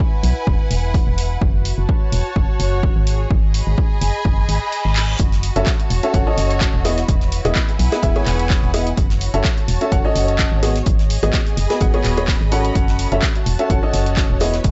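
A woody, slightly detuned upright piano riff arrives up front at 5.6 seconds in this energetic, bittersweet piano house piece, taken from a longer track. Its long sustain trails into tape echo under sidechain pumping. Beneath it, a hollow, organ-like FM bass with a fast attack and a dark, decaying tone also pumps, while a rich symphonic string section bows smooth vibrato between E4 and B5 in F# dorian. The groove runs at 127 BPM in 4/4 with a light swing on the sixteenths, driven by a punchy electronic kick and an analog drum machine's handclaps and hi-hat, both tape-warmed and re-recorded in a small room. A reverse cymbal sounds in the background from 4.5 seconds, the kick briefly drops away, and a drum fill lands at 5.0 seconds, after which a very quiet, dry 70s kit adds hi-hat and a medium-tuned snare. Chords move between E, F#m7, G#m7 and Emaj7, and the recording has a gritty cassette character with a dull top end and small room reverb.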